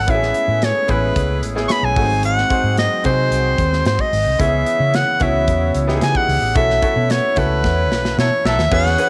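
Over a straight 4/4 groove, this glossy, upbeat 1980s jazz-funk pop excerpt puts a bright, close-miked soprano saxophone up front with vibrato, backed by brilliant grand piano accompaniment through lush chorus, a shimmering, very quiet pulse-width pad, a round, foam-muted fingered bass and a punchy, airy studio drum kit, all heard through the soft haze of a home cassette recording in a small room, while a band accent at 6.6 seconds carries into a drum fill and a brief mellow horn section figure at 8.2 seconds.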